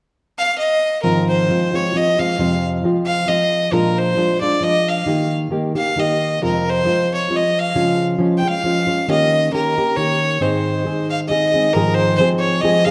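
A single bright violin carries the melody up front, its bowing airy with a light vibrato and an earthy edge, entering at 0.4 seconds. This short excerpt of mariachi-flavored Mexican folk music moves in a lilting triple metre with a gentle swing, and the mood is festive yet romantic. A thumb-plucked nylon-string guitar joins at 1.0 seconds, sitting just as close, with a dark, full-bodied classical tone underneath the violin's line. The harmony moves through a progression of major, minor, sixth and dominant-seventh chords before landing back on the home chord near 11.8 seconds. A wet recital hall reverb surrounds the pair, and the overall production leans dark and warm.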